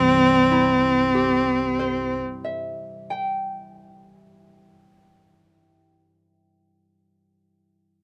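Rubato and unhurried at 31 BPM in 4/4, this brief cut from a longer impressionist classical duo rests on a C major harmony, tuned slightly low to A4 = 436 Hz, with a dreamy, luminous mood. A single bowed cello sits up front with a focused, vibrato-laden tone, singing the melody around C4 until 2.2 seconds, while the concert harp accompanies from C2 to G5 with bright, fingerpicked, ringing notes that carry on to 6.4 seconds. The close, detailed recording keeps the room dry, placing the cello clearly above the softer harp.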